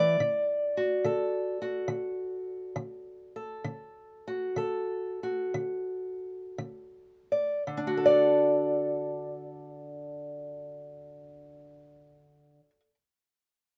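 A fingerpicked old ladder-braced acoustic guitar carries this short solo excerpt of acoustic country blues, its dark, boxy tone and old strings giving it a woody character. Set up front with light reverb, the guitar plays alone from 0.0 to 12.9 seconds, ranging from D3 to D5 in D major. The mood is laid-back yet rollicking, in 4/4 with a swung eighth-note feel at a tempo between 53 and 72 BPM. The tempo slows from 0.2 to 7.7 seconds over the opening section, which rests on a D chord, before a second section follows from 7.7 seconds. Cut from a longer piece, it captures an unhurried, homespun country blues moment.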